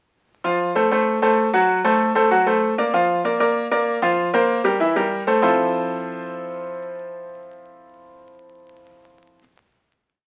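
Festive and sunny, this brief Latin piece moves at a brisk 193 BPM in a straight 4/4, set in F major. A bright grand piano plays alone throughout, running a piano montuno in octaves that sits up front with a brilliant, polished tone and short sustain. The harmony travels from F through D7, Bb over F and a C7sus4 resolving to C7 before settling on a closing Fmaj7 at 5.4 seconds, and the piano's part ends at around 9.4 seconds. A moderate club reverb gives the piano a sense of a small lively room. The sound carries the character of a very old 78 rpm record, with vinyl crackle running beneath the playing.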